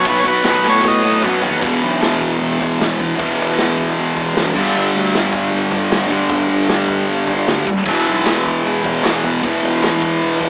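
Swaggering and rowdy, this garage rock clip from a longer piece hits at a driving pace with a straight feel, like a small band playing live in one room through a small speaker. A buzzy, clean vintage combo organ opens with a short melody soaked in spring reverb, dropping out at 1.2 seconds, while a bright, double-tracked fuzz guitar pushes its distorted, picked riff up front. Underneath, a dark, round fingered electric bass with overdrive and fuzz holds down the low end, and an acoustic vintage drum kit with a punchy kick, medium-tuned snare and rolled-off top rolls through a fill into the main groove at 1.6 seconds. Very quiet, hollow group handclaps appear near the start and return at 8.3 seconds. The harmony moves from B to E5, then G5, and back to E5, all inside a moderate large-studio reverb.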